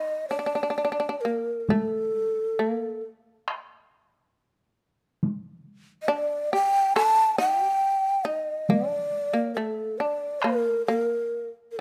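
Austere and solitary, this brief cut from a longer piece of Japanese chamber music in free-flowing rubato places a breathy, hollow end-blown bamboo shakuhachi up front on the melody, with vibrato and a tongued chiff, over a buzzing, plectrum-plucked fretless shamisen carrying a second line, while a compressed, saturated taiko ensemble struck with heavy sticks enters at 1.7 seconds and drops out at 10.6 seconds, all captured by close, detailed microphones in light reverb.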